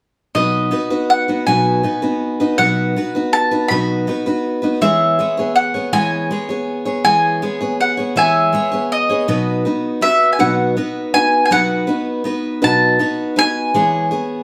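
Mandolin and picked steel-string acoustic guitar begin together at 0.3 seconds, setting a peaceful folk mood in 6/8 for a duo or small band. The mandolin carries the melody in its upper register, its doubled strings giving a round, close-up tone. Beneath it, the guitar plays a bright accompaniment across a broad span from low bass notes to the upper middle, sitting just behind the mandolin yet still up front. The harmony moves simply from B to E6, and the same pair of chords returns when a second section begins at 9.3 seconds. A moderate large-studio reverb adds an open, airy space around both instruments, and this warm passage, cut from a longer piece, closes at 14.4 seconds.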